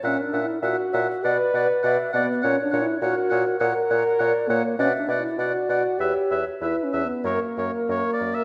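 All five winds of a quintet sound together from the first moment, opening on an F#7 chord over A# in a quick classical-period movement at 100 BPM in 4/4, its beats uneven and pulled by rubato. The mood is stormy and urgent as the harmony moves through B minor and F# over A#, touches a bare E fifth, and settles on F# near 7.3 seconds. A hollow, mellow silver flute carries the melody with vibrato and tongued notes, sitting in the background. The oboe adds a second line with light vibrato, while a bright clarinet with a soft attack and an up-front French horn with a warm tone fill out the accompaniment. A bassoon with a smooth top anchors the bass in its low register. The quintet sits in a moderate scoring-stage reverb, and this short passage of about 8.4 seconds is cut from a longer piece.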